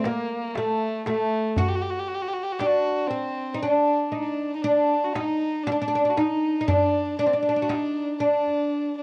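Melancholic and soulful, this short cut from a longer Arabic maqam ensemble piece moves at 118 BPM, counted in eighths, in a straight 10/8. The fretless oud carries the melody up front, its plectrum-plucked double strings giving a woody, deep voice, with plate reverb and the soft grain of cassette tape around it. A single violinist bowed close and intimate plays the second line, dark in colour with light vibrato, a soft attack and an airy bow, also tinted by cassette. The darbuka sits lower in the mix, its clay shell and natural skin sounding large and saturated under compression, and it stops at 8.6 s while the oud and violin carry on to 9.0 s. A moderate small-room reverb and the home cassette recording lend the whole passage a close, lived-in feel.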